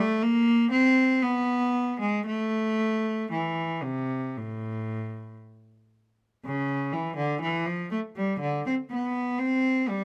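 The rhythm moves in a flexible, rubato four-beat pulse, stretching and yielding so the line flows with a solemn, unhurried gravity. This is a classical, baroque-style suite movement for a single unaccompanied cello, heard alone across the full 10.0 seconds of this fragment cut from a longer piece. The bowed cello speaks in a period style, its gut-string tone rich and faintly reedy, colored by a light vibrato as it moves between A2 and C4. The opening phrase begins anew at 6.4 s, giving the brief passage a sense of return. Close, detailed microphones place the instrument up front, while a light reverb lends a gentle sense of space around the sound.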